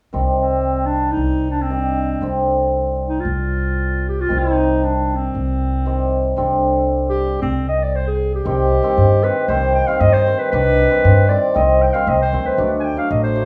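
This rough home demo sits in a small, wet room, with studio ambience around the players. It is a soulful, bittersweet klezmer piece, cut from a longer performance. The cimbalom and upright bass begin together at 0.1 seconds, the cimbalom's hammered strings shimmering and ringing up front while the pizzicato bass adds a woody, dark low end from its steel strings. A moment later the clarinet takes the solo melody in a classical style; its tone is warm yet distant and roomy, with a slapback echo trailing behind it. The harmony rocks between two chords before the passage moves into a new section at 8.4 seconds, and it turns to a D chord at 12.6 seconds just before the piece is cut off.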